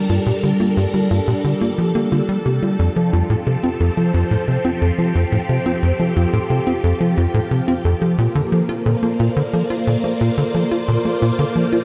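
A lush, wet hall reverb and a dark production wrap this short cut from a longer piece of ambient, sequencer-driven space music, giving it an expansive, mysterious air over a straight four-four pulse. A phased string machine carries sustained chords throughout, its vintage, warbling tone swirling through ensemble chorus and phaser, bright and up front with a soft attack and long release. Beneath it, a tight sequencer bass drives a punchy sawtooth-and-square riff, its filtered pluck and tape echo giving the low end a mellow but forward presence. A soft, round pluck spins gentle arpeggios in a narrow range, its full-bodied triangle-and-sine tone dressed in chorus and tape echo and sitting further back in the mix. The harmony drifts from Gm7 to F at 2.8 seconds and settles on Bbmaj7 at 8.2 seconds, with the whole piece tuned slightly below standard pitch.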